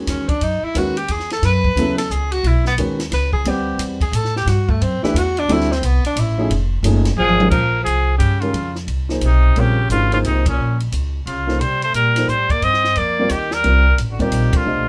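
Set in a small room with moderate reverb, this searching, hypnotic modal jazz excerpt swings in 3/4 at 177 BPM. A distant, subtoned tenor saxophone solos over a dark, mellow grand piano with audible action noise, a woody pizzicato upright bass up front, and a dry cocktail drum kit with dark cymbals and a punchy kick. A drum fill at 7.2 s brings in a vintage trumpet with light vibrato and scooped notes carrying the melody as the music settles into Bb dorian, with band accents at 10.4 s and 14.5 s.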